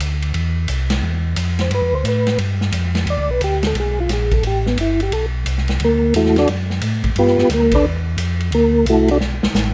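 A percussive, flute-like tonewheel organ with second-harmonic percussion, slow rotary speaker and chorus vibrato takes the melody up front from 1.6 seconds, over a round, dark organ bass line with key click and a natural, big-room swinging drum kit of boomy kick, medium-tuned snare, hi-hat and ride, in a greasy, soulful soul jazz organ trio piece with light reverb and a drum fill at 9.2 seconds.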